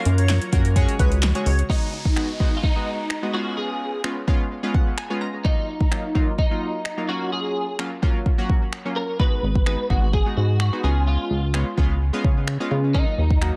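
A twelve-string electric guitar carries the clean, picked melody from 1.7 seconds over glossy, chorused retro synth keys, a dark pulse-wave synth bass and an up-front deep house kit with deep kick, fat snare, snaps and claps in this bittersweet, energetic dance-pop excerpt, which opens with a brief drop of an airy, dreamy lead and breathy pad before a downlifter sweeps through the echo-heavy mix.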